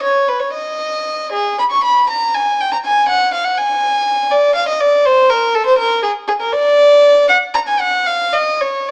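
A lone violin with a nasal, reedy gut-string tone and an airy period-style bow plays an introspective, flowing baroque-style suite movement in a rubato 6/8 for the whole 8.9-second fragment of a longer piece, set in a moderate stone-room reverb and heard from further back through a small-speaker sound.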